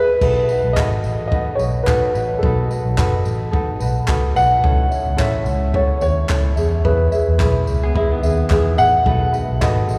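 Bathed in a long cathedral-like reverb, this sunny, easy-going acoustic pop excerpt at 109 BPM with a gentle 16th-note swing sets a mellow, woody upright piano melody over light fingerpicked ukulele, a round, punchy, foam-muted electric bass, a compact cocktail drum kit with tight kick, dark crash cymbal, handclaps and tambourine, and very quiet, crisp group handclaps, while a clean, compressed, direct-recorded electric guitar adds a brief second line from 7.8 to 8.9 seconds as the chords move from B7 through A and E.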